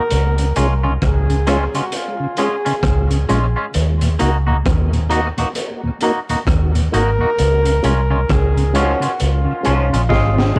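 A home cassette recording with light small-room reverb frames this laid-back, meditative roots reggae excerpt, where a distant flugelhorn with scooped notes and dub echo carries the melody over twangy electric guitar, a round, up-front muted bass, a gritty breakbeat kit with a high-tuned snare and tape echo, and a mellow tonewheel organ turning through a slow rotary speaker, before a horn section with light vibrato joins at 8.7 s amid a band accent and a closing drum fill.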